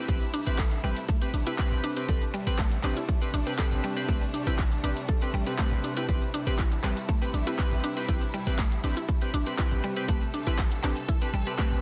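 Spiritual and hypnotic, this afro house excerpt moves at 120 BPM in A minor, resting on a single Am7 chord as a punchy, overdriven electronic kick sits up front over a deep, boomy 808-style bass and an overdriven house kit of handclaps, hi-hat and shaker. Above them, a woody, mallet-like FM pluck spins bright arpeggios through chorus and digital delay, while round analog keys built from square, sawtooth and triangle waves add ring-modulated stabs with a filter sweep. A dark, lush bowed string section holds sustained chords with vibrato, and every part except the drums breathes with sidechain pumping in a dense, heavily limited, nearly dry mix.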